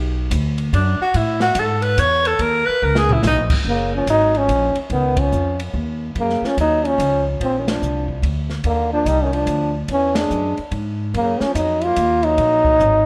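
Swinging and late-night, this small-group jazz piece in 3/4 opens with a breathy, whispered tenor saxophone solo over woody pizzicato upright bass and an open drum kit with dark cymbals and a boomy kick, before an up-front trombone with vibrato and scooped notes takes the melody at 3.7 s as the distant sax moves to a second line, with band accents at 5.1 s and 7.6 s and a lush hall reverb over a rough home-demo mix.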